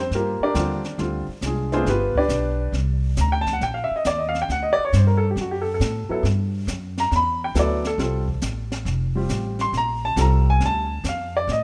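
Swinging and warm, this short cut from a longer jazz piano trio moves at 137 BPM in 4/4 with a lilting swing on the eighth notes. A present, up-front upright piano with a woody, polished tone carries the melody as a solo from 0.0 to 11.6 seconds. Beneath it are a plucked, steel-strung upright bass and a quieter brushed drum kit, entering at 0.1 seconds, with an airy, high-tuned snare and a boomy kick, while the chords move from Gm7 through Dm7b5, G7 and Cm9 to D, F and Bb6 in a light reverb.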